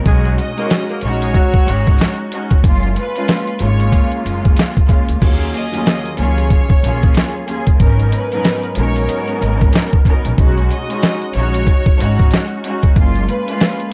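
A swung 93 BPM boom-bap groove in 4/4 drives this dark, tough hip-hop excerpt, with thumpy, compressed, pitched-down sampler drums (crash, hi-hat, kick and snare) sitting up front over a woody, pizzicato upright bass with tube saturation. A distant, bowed string section with a cassette-tape tint carries chords such as Ebm11 and Abm11 beneath a biting, intense violin melody that enters at 0.4 seconds. A smooth-topped saxophone section stabs briefly from 0.1 to 2.0 seconds through tape echo, and the dry, gritty recording is dusted with vinyl crackle.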